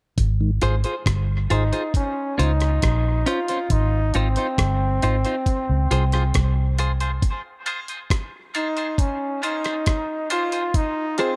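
A dusty, compressed sampler-style drum kit with a thumpy kick and rim click opens this laid-back, hazy dub reggae excerpt at 68 BPM in Ab major together with a dark, foam-muted fingered electric bass up front. They are soon joined by a brief blip of mellow tonewheel organ through a slow rotary speaker and a clean, picked electric guitar soaked in dub echo, all moving between Ab6 and Dbmaj7. From 1.5 seconds a bright, punchy trombone with light vibrato carries the melody up front, and from 3.7 seconds a filter sweep colours the mix. The bass drops out at 7.2 seconds for a break, where a worn, slightly detuned upright piano adds echoing stabs in the background under light reverb and digital ambience.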